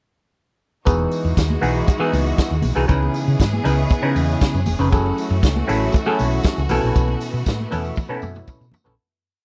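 At 0.9 seconds, a driving, danceable disco pre-chorus at 118 BPM kicks in with a vintage drum kit playing a four-on-the-floor beat with open hats on the off-beats. A round, dark hollow-body bass plays a syncopated line with chromatic approach notes, and a stringy, overdriven clav with phaser plays syncopated chord stabs with grace notes, while a lush bowed string section holds sustained chords over Emaj9, C#m9, F#m7 and B7sus4. Very quiet, bright congas and a jingly tambourine in the background fill out the dry, close 1970s-style sound, which fades out from 7.0 seconds as a drum fill arrives at 8.0 seconds.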